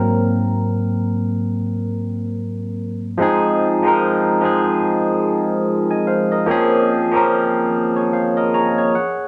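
A bright, barky tine electric piano plays alone and up front through a combo amp with a clean phaser-tinged tone, carrying a sultry, soulful R&B solo at 73 BPM in Bb minor with a swung sixteenth-note feel, moving from Ab9 to Fm7 at 3.2 seconds and on to Bbm7 before closing with a fill at 8.1 seconds, all set in a light studio reverb in this short section lifted from a longer piece.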